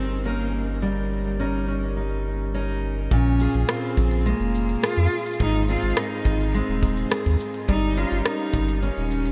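Delicate and hopeful, this short folktronica passage sits in a straight 4/4 groove cut from a longer piece. A dark, full-bodied fingerpicked steel-string acoustic guitar plays arpeggios up front, while a distant bowed cello carries the melody with vibrato and portamento, both parts touched with tape echo. Beneath them a deep, round sine sub bass holds a sustained, up-front low end from the start. At 3.1 seconds the drums arrive: a natural, punchy acoustic kick sits in the background, and an organic electronic kit adds crisp hi-hats, rim clicks and shaker, its tape-warm sound re-recorded in a large room. Light reverb and a small room ambience frame the whole, as the harmony moves from Eb7/G through Bbm7 and Ab to Eb7.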